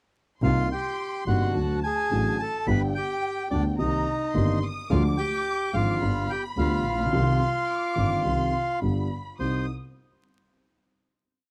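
Tense and passionate, this short rubato tango in C minor at 107 BPM sets a reedy, close-miked bandoneon melody of motif-based period phrases, partly doubled in octaves, over a bowed violin section's warm vibrato counter-melody, a vintage-toned grand piano with audible action noise and a rich bowed double bass sharing a milonga rhythm, all captured in a dry, close 1970s-style studio sound with vinyl crackle before settling on a final C minor chord at 9.4 seconds.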